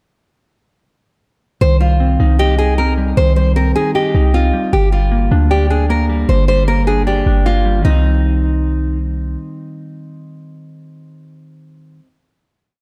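A dark, small-room production frames this menacing, hard-hitting half-time trap piece, where a bright, fingerpicked nylon-string guitar with fresh strings and audible finger squeak plays a looping melody through tape echo, a clean, mellow electric guitar repeats a rising and falling eighth-note arpeggio like a sampled loop, and a deep, boomy 808-style bass holds long sub-bass notes up front over a Cm to Gm hook, before the electric guitar rings on alone from 9.4 seconds into the final chord.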